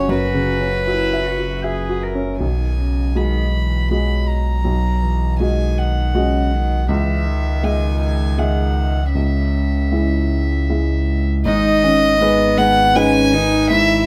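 Lightly reverberant, with the feel of a band playing live in one room, this melancholic, fragile fragment of neoclassical piano and strings moves in a rubato 3/4 at 80 BPM, with a rich, floating sul tasto violin carrying the melody up front over a pure, smooth-topped bowed cello second line, a vintage-toned grand piano accompaniment, and a deep, full sine-and-triangle sub bass with octave sustaining up front beneath, all four sounding throughout from 0.0 to 14.1 seconds.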